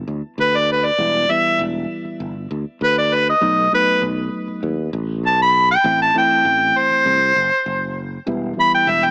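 Straight-eighth soul blues at 99 BPM in E minor with a smoky, brooding mood, built on a growly fretless electric bass from the start, with a mellow, overdriven harmonica soloing up front from 0.4 seconds with light vibrato and scooped notes, while a reedy, clean electric piano joins at 1.0 seconds to accompany the Em, B7 and Am changes, all in a small room with light reverb and a small-speaker sound.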